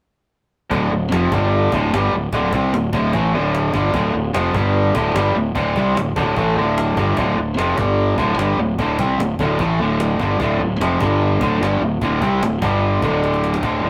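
Raunchy and swaggering, this short cut from a longer blues rock and southern rock power-trio piece rides an up-front, double-tracked overdriven garage guitar riff that alternates between D5 and G5 power chords over a growly, punchy fuzz bass, with a woody cajon played with hard hands in the background and a drum fill at 13.2 seconds, all set in a rough rehearsal-room recording with moderate stone-room reverb.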